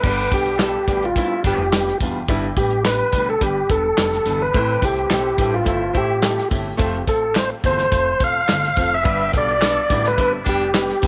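A lightly overdriven tonewheel organ leads this uptempo 1960s-style soul passage at 106 BPM, its clear, key-clicking melody sitting up front through a fast rotary speaker and tape echo. The mood is passionate and urgent, riding a straight 4/4 over a G, Am, F and back to G progression. A soul drum kit with dark cymbals, a medium-tuned snare and a tight kick drives the groove, sounding roomy and somewhat distant, with a rolled-off top end. Beneath it, a woody pizzicato upright bass and a natural-sounding concert grand piano with deep lows fill out the accompaniment. A loose, pop-style horn section plays a second line from afar, while a breathy, whispered baritone saxophone repeats a low riff in the background with light vibrato and scooped notes. Tambourine and group handclaps, joined by a tube shaker, enter at 0.3 seconds, close yet tucked behind the band, all held in light reverb and small-room ambience in this short cut from a longer piece.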